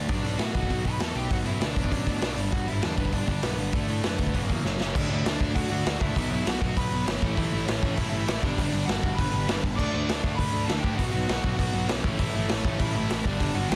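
Punk rock in B minor at 199 BPM, raw and aggressive, with a gritty, up-front garage drum kit of punchy kick and dark cymbals driving a growly fuzz bass and crunchy and bright overdriven guitar riffs while a dark, distorted bluesy lead guitar with delay carries the melody, a drum fill at 4.6 seconds ushers in a double-tracked, biting third riff guitar at 4.9 seconds, and the whole is dense and heavily limited with light reverb.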